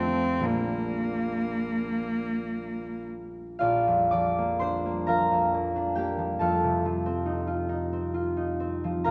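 In a rubato 6/8 at 35-48 BPM, this lyrical, warm romantic classical excerpt in Bb major pairs a clear, focused bowed cello singing its vibrato melody up front until 3.1 seconds with a bright, ringing fingerpicked concert harp whose accompaniment spans Bb1 to D6 through 9.1 seconds, moving from Bb to F7 within a wet scoring-stage reverb.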